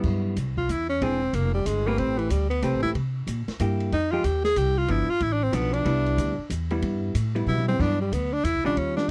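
A brisk jazz waltz swings in 3/4 at 186 BPM, with a sophisticated small-group swing and bop character in C major, cut from a longer piece. The upright bass sits up front, plucked with a woody, thumpy tone from gut strings, while the hollow-body electric guitar comps underneath in a dark, clean, compressed voice. The acoustic drum kit sits further back, with a medium-tuned snare, a boomy kick and dark, rolled-off cymbals, and it adds a short fill at 7.5 seconds. The tenor saxophone enters at 0.6 seconds and carries the solo, forceful and punchy with vibrato, scooped notes and a smooth top end. The harmony moves through rich changes such as Cmaj7, E7alt, Am9 and G7 before settling on a rootless Cmaj9, all captured in a dry, close 1970s-style studio sound with little reverb.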